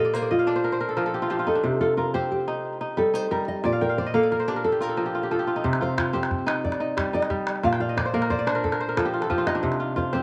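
A ringing, crisp kora up front spills tape-echoed arpeggios and fills while a dark, full-bodied, thumb-plucked nylon-string guitar solos over an alternating Bb and Cm progression in this flowing, reflective West African string excerpt at 120 BPM in a straight 12/8, with a small, band-limited calabash joining at 5.6 seconds inside a moderate echo-chamber reverb.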